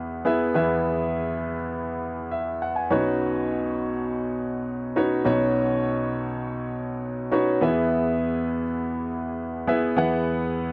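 This pop passage moves at 102 BPM in a straight 4/4, with a warm, anthemic mood carried by a lone baby grand piano spanning B1 to G#5 across its 10.7 seconds. The piano sits up front with a present, polished tone and long sustain, moving from E to Badd9 at 2.9 seconds and back to E at 7.6 seconds. Light reverb touches a dry, close sound in the manner of a 1970s studio recording.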